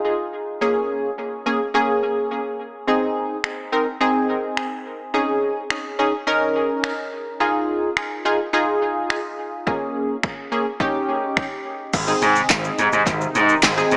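A funky sawtooth polysynth comp with a quick filter pluck, chorus, sidechain pumping and analog delay opens this upbeat, summery dance-pop excerpt at 106 BPM in Ab major, joined at 3.4 seconds by a punchy, tape-tinged analog drum machine of kick, snare, handclaps, finger snaps, hi-hat, shaker and crash, before a gritty, overdriven slap bass and an airy, detuned resonant pad with a slow filter swell arrive at 11.9 seconds, set in an echo-heavy mix with plate reverb and a small-speaker sound.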